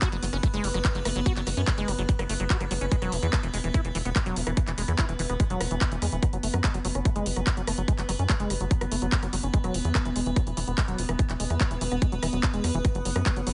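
Psychedelic trance in an intense, driving mood: this excerpt sets an up-front, tape-warm electronic kick under a tight, punchy sequencer bass with a sawtooth-and-square filter pluck, while an overdriven big-room dance kit adds handclaps, hi-hat and rim click. A squelchy, resonant liquid acid bass riff carries chorus, dub echo and sidechain pumping, and a bright, evolving wavetable pad holds slow-attack chords moving between F#5 and E5, colored by phaser, built-in reverb and its own pumping. The whole sits in a digital ambience with nothing above 10.6 kHz.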